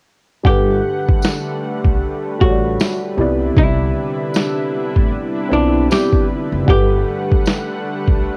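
At 0.4 seconds a dark upright piano, a lush unison pad and a lo-fi sampler-style drum kit enter together, setting a cosy, nostalgic lo-fi hip hop groove at 77 BPM in 4/4, swung on the sixteenths, in G major. The piano is mellow and intimate, slightly detuned with audible action noise, while the sawtooth pad holds thick, warbling chords through chorus and a low-pass filter, moving from Gmaj9 to Cmaj9 at 3.2 seconds and returning to Gmaj9. The drums sit up front, compressed and pitched down, with a thumpy kick and a medium-tuned snare. Moments later a clean, hollow-body archtop guitar carries a picked melody between D4 and G4, and a woody pizzicato upright bass with gut strings anchors the low end. From 1.2 seconds a jingly tambourine sounds distant, as if in a large room, while cassette tape lends a vintage haze to the piano, pad, drums and guitar, all within the small-room ambience of a home recording cut from a longer piece.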